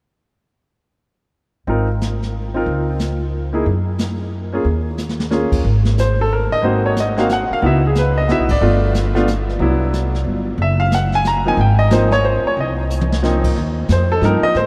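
Jazz piano trio in a playful waltz at 182 BPM, swinging in 3/4, with a bright, brilliant upright piano carrying the melody up front alongside a woody pizzicato upright bass and a dark, smooth brush drum kit with boomy kick and dark cymbals, all entering at 1.7 seconds and bathed in a huge, echoing reverb, with drum fills near 5.0 and 12.9 seconds and a band accent at 8.5 seconds over chords moving from Ab6 through Cmaj9#11 to Eb69 in this short excerpt.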